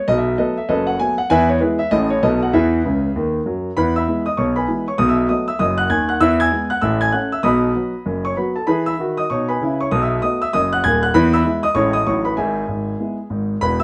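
Stride piano jazz in E major, exuberant and playful, swinging briskly at 195 BPM as a solo concert grand carries the whole passage from 0.0 to 13.8 seconds, reaching from deep bass notes up into the high treble. The piano sits up front with an open, warm tone and moderate studio reverb, and a fill from 2.8 to 3.8 seconds bridges into a second pass through the same section. The harmony circles around E, A and B7, closing on Amaj7, B7/A and E/G#.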